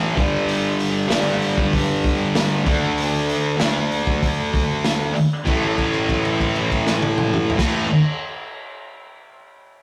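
A straight 96 BPM groove in 4/4 drives this gritty, swaggering garage rock excerpt, where a thick, double-tracked fuzz guitar riff in bright, distorted tones moves from G5 to D5 to A5 power chords and holds a note from 5.5 seconds, over a crunchy, saturated breakbeat drum kit of tight kick, medium-tuned snare, hi-hat, toms and dark crash cymbal, all set up front in a rough rehearsal-room recording with tube saturation and wet studio reverb.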